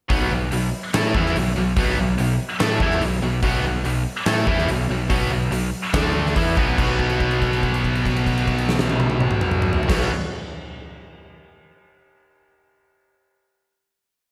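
Swaggering and powerful, this short hard rock piece charges along at 143 BPM in a straight 4/4, with three bright, picked electric guitars playing a power-chord riff: a scooped high-gain guitar, an overdriven semi-hollow guitar with slapback echo, and a very quiet, double-tracked high-gain guitar. An overdriven electric bass drives eighth notes that double the guitar riff, while a huge arena drum kit with a fat snare and punchy kick sits up front in a big groove. The riff moves through B5 and D5 chords before landing on a final chord at 6.8 seconds that is held to 9.9 seconds, all set in a big arena sound with lush hall reverb.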